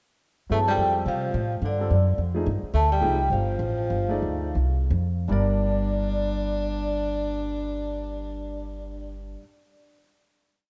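Modal jazz in G minor, intense and spiritual, swinging in 4/4 at 150-215 BPM. A ringing, metallic vibraphone with medium hard mallets and motor vibrato carries the motif-based melody, joined by a tenor saxophone with soft, scooped notes and light vibrato on the second line. Beneath them, an intimate grand piano with audible action noise comps in syncopated quartal voicings, and a woody, up-front pizzicato upright bass walks over a G9sus4 chord. The band slows from 2.7 s and settles on a held G minor chord at 5.3 s, all in a lush hall reverb and a rough home demo mix.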